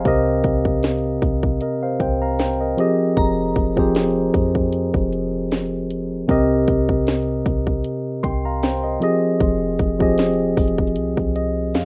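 A lightly swung sixteenth-note feel in 4/4 drives this late-night contemporary R&B fragment, cut from a longer piece and steeped in longing. A trap drum kit sits up front with a hard-clipped kick, sharp snare and metallic hats, all roughened by vintage 12-bit sampler grit, while a clean, boomy 808-style bass supplies deep sine tones that strike quickly and decay. A mellow tine electric piano, close and direct, carries the harmony, alternating between Cm7 and Fm9, and closes with a short fill from 11.0 seconds. Between 3.2 and 9.4 seconds a crystalline FM synth bell glints high in the background, coloured by chorus and tape echo. Moderate studio reverb gives the rough home-demo mix a modest sense of space.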